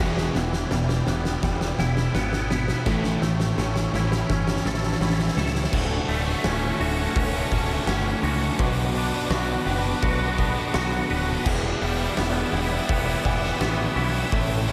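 A straight 4/4 pulse comes from an oversized, low-tuned acoustic drum kit that enters at 0.2 s with a fill, its boomy kick, fat snare and dark cymbals sitting gritty and up front in a pumping big room. This soaring, euphoric post-rock passage, cut from a longer piece, opens with a build-up over Em7 and A7 before moving into a second section that runs through Dmaj7, Bm7 and back to Em7 from 5.7 s. A twangy, scooped clean guitar spins arpeggios through ensemble chorus and delay, while a bright, picked distorted guitar drives a riff. A thick, very quiet fuzz guitar plays its own riff in the low register until 5.7 s. Underneath, a growling overdriven bass anchors the low end, and a very quiet, lush string section holds sustained chords with vibrato and a smooth top, the whole mix drifting dreamily in a hall reverb.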